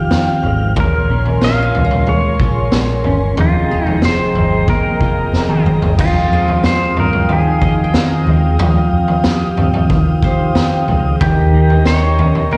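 A raw garage drum kit sits up front with a gritty, saturated sound, a boomy kick and a high-tuned snare, and a drum fill runs from 5.3 to 6.0 s in this haunting, hazy dream pop at 92 BPM in F minor. Beneath it, a round, punchy muted bass and a clean semi-hollow guitar playing arpeggios through ensemble chorus and tape echo sit alongside a mellow, flute-like tonewheel organ holding sustained chords through a slow rotary speaker and shimmer reverb. A pedal steel guitar enters at 0.8 s with a slide melody full of volume swells, and a bright-edged qanun glimmers in the background from 1.4 s, the chords moving from Fm9 through Bbm9 and Fm11 to a closing Eb7 inside a large, reverberant studio sound.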